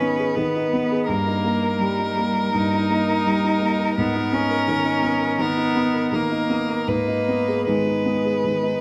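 An up-front concert grand piano with a deep, open bass carries the accompaniment in this reflective, melancholic neoclassical piece for piano and strings, moving with a loose rubato feel in 4/4. Above it a single bowed violin sings a clear, smooth, even melody with vibrato, while one cello adds a rich, intense second line touched with light vibrato. Close, detailed microphones place the three players in a moderate recital hall reverb across this brief 8.8-second passage cut from a longer work.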